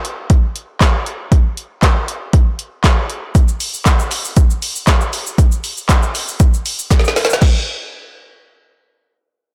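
A straight 4/4 pulse at 118 BPM drives this short pop fragment, cut from a longer piece, with a mood that feels driving yet bittersweet. A deep house drum kit sits up front from the start, layering a punchy kick, woody snare, dark hi-hats, shaker, handclaps and crash cymbal into a produced, electronic groove that sounds re-recorded in a small room. At 3.9 seconds a group handclap joins, human and crisp, close and dry but very quiet beneath the kit. A drum fill arrives at 6.9 seconds, just before the music shifts into a new section at 7.4 seconds. The recording as a whole is blown-out and overdriven, with a light reverb around it.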